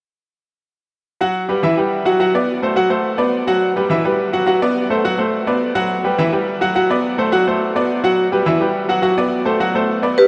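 This festive, danceable Latin excerpt moves at a brisk 211 BPM in a straight 4/4, cut from a longer piece. From 1.2 s to 10.1 s, a bright concert grand piano carries the accompaniment alone, its brilliant tone and deep bass sitting present and up front as it cycles through Gmaj7, Emadd9 and Bm7/F#. At 10.2 s a vibraphone struck with medium hard mallets takes up the melody in a narrow range. It is louder than the piano, with a metallic, ringing and smooth yet dark voice shaped by a slow motor vibrato. A huge, wet ambient reverb places the recording in a vast, echoing space, with a tail lasting about 7.1 seconds.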